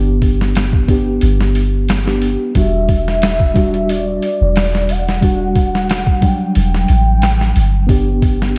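Gritty, pitched-down boom bap drums with a thumpy kick enter at 0.2 seconds and sit up front beside a deep, round 808-style bass in this smoky, dark trip hop excerpt, while a reedy electric piano shimmers with fast tremolo and tape echo and a pure, breathy sine lead glides in at 2.6 seconds through lush chorus and vibrato, all soaked in dreamy hall reverb.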